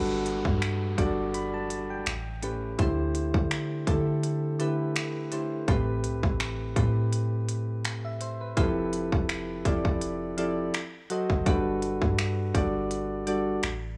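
Dry and gritty, with a hardware-saturated edge and little reverb, this short cut from a longer contemporary R&B piece feels romantic and tender at 83 BPM in 4/4, with a light swing on the sixteenths in G major. Mellow, round electric-piano-like synth keys sit up front with a chorus sheen, carrying lush extended chords from Gmaj7 through A7, D9sus4, Am9 and Fmaj9#11 before an F#dim7 leads home to Gmaj7 at 11.5 seconds. Beneath them, a deep, dark 808-style bass with a sine-like tone and fast, decaying notes anchors the harmony. A trap drum kit enters at 0.3 seconds with a hard-clipped kick, crisp hi-hats and finger snaps, its electronic sound roughened by vintage 12-bit sampler grit. In the background, an electronic downlifter sounds until 5.7 seconds.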